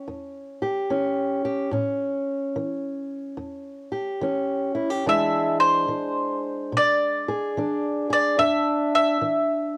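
Opening on a brief bright, double-stringed entry from an up-front bowl-back mandolin over a boxy, fingerpicked old ladder-braced acoustic guitar, this rollicking, swaggering acoustic country blues fragment, cut from a longer piece, swings at 72 BPM in 4/4 on an A7 chord until the mandolin's picked melody returns at 5.1 seconds as the harmony moves to E7, both parts carrying the grain of a cassette home recording with light reverb.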